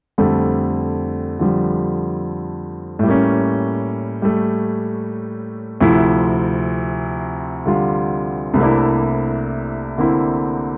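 A clear baby grand piano carries this short solo jazz excerpt alone, sounding intimate and natural, sitting up front with audible action noise from the instrument. The mood is sophisticated and playful, moving at 86 BPM in 4/4 with a swung eighth-note feel loosened by rubato, in F major. The harmony moves from F69 through A7b9 at 3.0 seconds, Dm9 at 5.8 seconds and C13 at 8.6 seconds, with the playing ranging from C2 up to F4. A small room reverb frames the piano, and the overall sound is dry and close, in the manner of a 1970s studio recording. Cut from a longer piece, the passage runs from 0.2 to 10.8 seconds.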